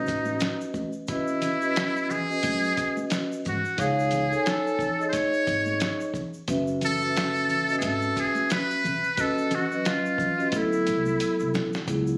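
A muted trumpet and a soft-mallet vibraphone open this smoky, mellow jazz-hop piece together at 0.0 seconds, in C# minor at 89 BPM with a swung 4/4 feel. The trumpet carries the solo melody up front, its metal mute giving a buzzy, thin, brilliant tone with jazz-style vibrato and a close-miked presence. The vibraphone accompanies it, metallic and ringing with its motor off, sitting up front in a boxy small room. A pizzicato upright bass joins at 0.1 seconds with a woody, thumpy low end. A lo-fi sampler-style drum kit enters at the same moment, compressed and muffled, with a medium-tuned snare and a thumpy kick, while egg shaker and congas add a vintage, band-limited layer in the background. The harmony moves through lush extended chords such as B9, E69 and F#m11, and a drum fill at 10.5 seconds closes this fragment cut from a longer piece, with a phone-in-the-room character and light reverb over the whole.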